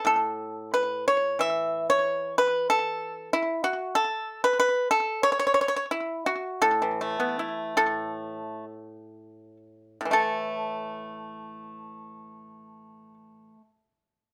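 Closely miked and detailed, this short cut from a longer Chinese traditional piece places a solo pipa up front in a light reverb, its dry, percussive fingerpicked tone carrying a slapback echo. The pastoral, flowing line moves in free rubato between 56 and 97 BPM in the A gong mode, ranging from A2 to E5. The pace slows from 4.0 to 10.1 seconds, when a new section begins, and the pipa stops at 13.6 seconds.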